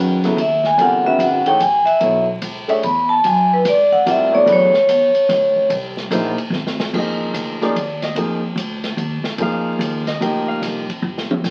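Heard through the crackle of a very old 78 rpm record and a moderate club reverb, this brief excerpt of intense, cool modal jazz swings in 3/4 at 146 BPM. A ringing, metallic vibraphone played with medium hard mallets, motor off, sits up front with a solo melody until 5.7 seconds, over a polished, long-sustaining upright piano comping through chords like C#m11 and Bm11 and a woody, thumpy pizzicato upright bass. A dark, boomy acoustic drum kit with dark cymbals and a rolled-off top adds a fill at 6.5 seconds before the music settles into F dorian on an Fm9 at 6.9 seconds.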